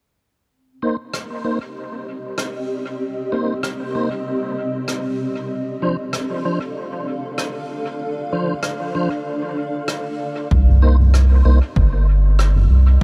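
This ambient dub excerpt has a hazy, deep mood, with a swung 4/4 lilt and a chord move from Cm7 to Dm7 and back. A mellow tonewheel organ opens at 0.8 seconds with dark, clean stabs carrying key click, chorus vibrato and a fast rotary speaker, softened by a low-pass filter and trailed by dub echo. A distant, roomy soft-mallet kit soon adds rim clicks and toms with dub echo. A granular cloud pad then spreads blurred, detuned sustained chords with a slow attack, long release and its own reverb, while a filter sweep shifts through it. At 10.5 seconds a round, up-front analog bass arrives with a fast attack and sustained low notes, joined by a punchy, overdriven electronic kick set in the background, all within a light reverb.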